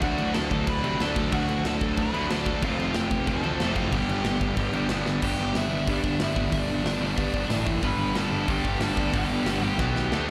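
A dark, sludgy distorted guitar sits up front with slapback echo in this upbeat, energetic punk rock cut from a longer piece at 184 BPM in G major, joined by a warm, biting lead guitar melody with delay, a growly fuzz bass, a tight metal drum kit with bright cymbals, and a brighter overdriven rhythm guitar in the background that drops out at 5.2 seconds and returns at 7.8 seconds, all heard through a club PA with drum fills at 5.1 and 9.8 seconds.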